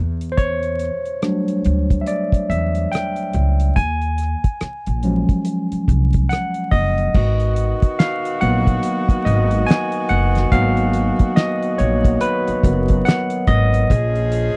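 A swung sixteenth-note groove from a cloth-damped, thuddy drum kit with a fat snare, tight kick, handclaps and dark cymbals sits beside woody, growly pizzicato upright bass in this smooth, sultry neo-soul R&B excerpt, where a barky, amp-driven tine electric piano solos throughout over minor eleventh, ninth and seventh chords and a tight, vibrato-laden saxophone section adds bright jazz stabs from 7.1 seconds, all captured in a dry, close 1970s-style studio sound with vinyl crackle.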